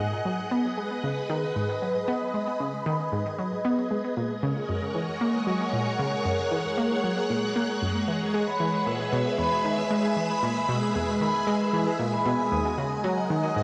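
A swirling, vintage string machine holds bright, slow-blooming chords with ensemble chorus and phaser, while a round, detuned analog pluck plays a riff below it with chorus and delay, both sitting up front. This cosmic, expansive stretch of sequencer-driven space music, cut from a longer piece, moves through G#m, F#add9, E and D#m in a straight 4/4. At 8.5 seconds a mellow, fingerpicked concert harp joins with ringing arpeggios trailed by delay, and the whole home cassette recording is bathed in a lush hall reverb.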